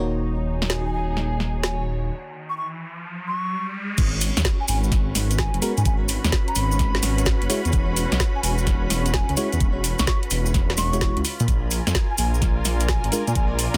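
Late-night and soulful, this swung two-step garage cut opens on a silky string machine, veiled con sordino chamber strings and a deep, rumbling detuned saw bass, all pumping under sidechain, while a glassy, bell-like FM electric piano with 12-bit grit, chorus and delay plays stabs under a filter sweep. The garage kit with its woody snare and metallic hats joins early, and a pure wooden flute carries the melody through digital delay; the piano drops out at 2.1 seconds for a break as an electronic riser builds. At 4.0 seconds the drop lands with a knocking electronic kick and a grainy cabasa, the piano returns at 5.6 seconds, and the whole sits in a digital ambience with a dense, heavily limited modern master.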